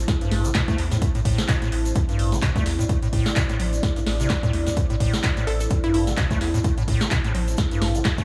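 A round sine sub bass and a moody, detuned sawtooth pad with chorus, sidechain pumping and a long release open this trippy, driving acid house excerpt in A minor at 128 BPM with a swung 16th feel, joined almost at once by a punchy, tape-toned electronic kick, a booming analog drum machine with congas, crisp snare, handclaps and metallic hats sent through analog delay, a grainy egg shaker in the background, and a squelchy, resonant square-wave acid bass riff with overdrive, chorus and delay, while a bouncy, detuned square pluck with dub echo appears briefly from 5.5 to 6.0 seconds, all within an echo-heavy mix on a spring reverb.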